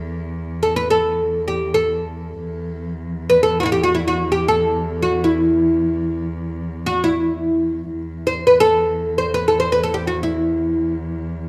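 Turkish makam ensemble music in free time and makam Ussak on E, this hypnotic, soulful excerpt sets a bright, woody fretless oud, plectrum-plucked on double strings and up front, carrying the melody between E4 and C5 until 10.9 s over a rich bowed cello drone on E2 with vibrato, portamento and a soft attack, all in a moderate recital hall reverb.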